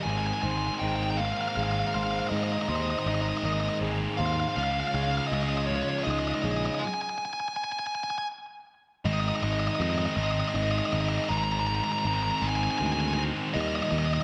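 Euphoric and hopeful, this rock passage in a straight 6/8 builds for its first 9.1 seconds. A dark, smooth overdriven lead guitar carries the melody up front with slapback and tape echo, over a thick, double-tracked fuzz riff and a growly, punchy picked bass. A slightly broken-up, lo-fi guitar through a small old amp plays arpeggios and a very quiet, lush bowed string section holds chords, both falling away at 6.8 seconds, while a hall reverb gives the whole mix a big arena sound.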